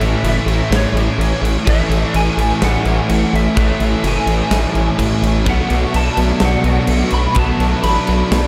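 Soaked in a moderate, lush hall reverb, this short cut from a longer shoegaze and dream pop rock piece sounds blissful and dreamy. It moves at a straight 126 BPM in 4/4. Up front, a gritty, saturated synth bass built from square, sawtooth, sine and sync tones growls with a resonant, aggressive edge and a fast attack. A big acoustic rock drum kit in a bright stone room supplies a punchy kick, a medium-tuned snare and crashes until 8.4 s. Layered behind them, a thick, dark fuzz guitar with ensemble chorus, a bright double-tracked overdriven guitar and a very quiet crunchy overdriven guitar play riffs. A twangy, slightly broken-up guitar through a small old amp ripples arpeggios through lush chorus and delay. Above it all, a softly driven, compressed lead guitar with chorus and delay carries a high, warm melody over a rootless F#m7 that shifts to Bm7 at 5.5 s, all of it running the full 8.5 seconds.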